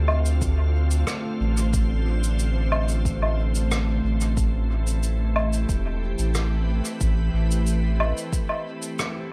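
This slice of a longer ambient dub piece moves at an unhurried 91 BPM in straight 4/4, with an electronic kick drum giving a deep, layered, tape-warm thump that sounds re-recorded in a small room. Around it, a woodblock, shaker and rim click sit distant and roomy in an acoustic studio space, their hits trailed by dub echo. A soft, round sub bass in D dorian sits up front, its fast attack and sustained tone ranging from E1 to D2 beneath the beat. Above, an organ-like pad holds calm, full-bodied chords built from pure sine and triangle tones with a touch of ring modulation, its slow attack and long release softened by ensemble chorus and its own reverb into a bright haze. The harmony shifts from Dm7 to Am9 at 4.4 seconds. Light reverb and studio ambience frame the whole, leaving a spacious, hazy mood across its 9.3 seconds.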